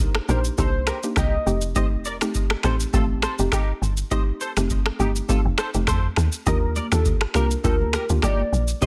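A woody, punchy log drum bass sits up front in this joyful, sunny afrobeats excerpt, its FM tone carrying a noise layer and decaying after each hit. Beside it, a booming analog drum machine plays a dry, deep kick with finger snaps, rim clicks and shaker in a lightly swung 4/4. A soft, round pluck with a dark, detuned edge and chorus fills out the accompaniment over Cm7, F7 and Ebmaj7 chords. From 0.3 seconds, a bright, twangy clean electric guitar, recorded direct and compressed, picks a riff through ensemble chorus and delay. A velvety synth lead with vibrato and chorus sounds a short phrase near the start and returns at 6.5 seconds, the same moment thick-skinned, high-tuned congas join in the background. Digital ambience gives the mix a sense of space.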